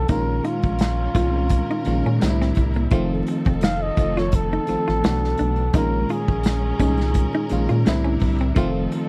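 A dry, close 1970s-style studio sound with vinyl crackle frames this introspective, sultry R&B and neo-soul excerpt in a lightly swung 4/4. A veiled, raspy trumpet with a bucket mute carries the melody with breathy vibrato, growls and scooped notes. It sits over a glassy, bell-like FM electric piano with chorus, a smooth bowed string section holding sustained chords, and a clean, picked hollow-body jazz guitar playing a second line. Underneath, a rubbery square-wave bass and an up-front acoustic kit of punchy kick, snare and hi-hat played with bundle sticks ground the Bbm9, C9 and F7 changes.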